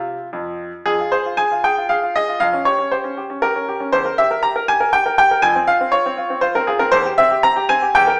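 A straight, even pulse in three carries this short passage cut from a longer classical-period piano sonatina, and its mood is elegant and serious. A clear baby grand piano plays alone throughout, spanning E2 to Bb5, with a natural tone, short sustain and an up-front place in the sound. The harmony moves from an open F5 into Fm at 0.9 s, then through Gm7b5/F, Edim and a return to F5 before settling on C/E at 6.9 s. The main section begins at 0.9 s and runs to the close at 8.2 s. A wet recital hall reverb surrounds the instrument, though the overall sound carries the compact character of a small speaker.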